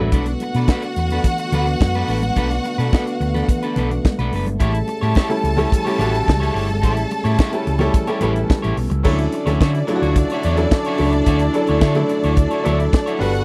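A dry, close 1970s-style studio sound frames this celebratory, glamorous disco passage at 108 BPM in D major. An up-front funk kit with a high-tuned snare and tight kick drives it alongside a dark, round hollow-body bass, while a slightly broken-up picked electric guitar comps, lush bowed strings carry a focused second line with vibrato, and a background French horn section holds smooth sustained chords. Very quiet, high-tuned congas add thick-skinned color until 9.0 s, an intimate baby grand with audible action noise sounds briefly at the opening and returns at 5.3 s, and the harmony moves from Bm7 and A7 to Dmaj9 at 9.1 s.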